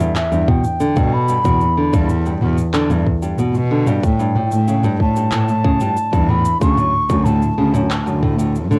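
A straight 4/4 pulse at 93 BPM comes from an organic electronic drum kit of cabasa, handclaps and toms, re-recorded in a large room and joined at 0.5 seconds by a tight electronic kick that drops out at 8.5 seconds. Over it, this hopeful, pastoral folktronica fragment in A mixolydian sets a small, fingerpicked nylon-string guitar's arpeggios beside a pure, woody baroque flute melody with vibrato and analog delay, and all three carry a cassette-tape grain. An intimate, up-front cello enters at 0.3 seconds with an airy, sul tasto bowed bass line and light vibrato, the whole home recording sitting in light reverb as a short cut from a longer piece.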